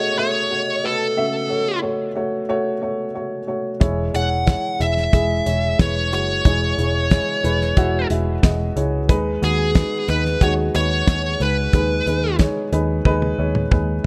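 A smooth, overdriven lead guitar carries the melody up front in this hopeful, anthemic piano-driven pop excerpt, its bright picked tone singing between G#4 and F#5 until it drops out at 12.4 seconds. Beneath it, a dark upright piano plays the accompaniment throughout, mellow and woody, with an intimate, vintage character and audible action noise. At 3.8 seconds a muted, picked electric bass enters with a round, punchy, amped sound, alongside a damped 70s acoustic drum kit that is dry and fat-snared, with a tight kick and a rolled-off top. The piece moves at 91 BPM in a straight 4/4, shifting from F#m to C#m/E as the rhythm section arrives. A drum fill at 13.1 seconds closes the passage, all set in a small room with light reverb.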